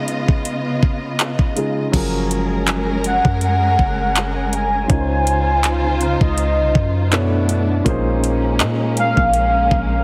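Contemporary R&B with a moody, late-night feel, this excerpt from a longer piece moves at 81 BPM in 4/4 with a light swing on the sixteenths. A warm grand piano accompanies from the start while a dark, woody string section holds sustained chords, the strings sounding lush and distant with vibrato, and an electronic drum kit sits up front with a knocking kick, metallic hi-hats, handclaps and crash cymbal. At 1.9 seconds a deep, boomy 808-style bass arrives with a fast attack and mellow decay, as the harmony moves through rich ninth and eleventh chords from Gbmaj9 to Dbmaj9 and on to Bm11 and Bbm11. A velvety synth lead enters at 3.1 seconds, carrying a smooth, sustained melody high in its register with vibrato and chorus. Near the end a soft, round pluck with chorus adds a gentle texture in the background. The mix is dry and heavily compressed, giving it a close, radio-ready sound.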